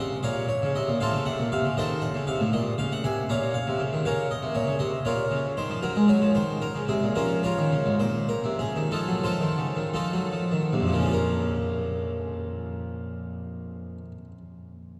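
A close-miked, brilliant French-style harpsichord with three sets of strings plays a solemn, introspective baroque-style suite movement in a rubato 12/8, slowing from 5.0 to 11.1 seconds before moving into a brief second section, all heard as a fragment of a longer piece set in a dark production with a long cathedral reverb.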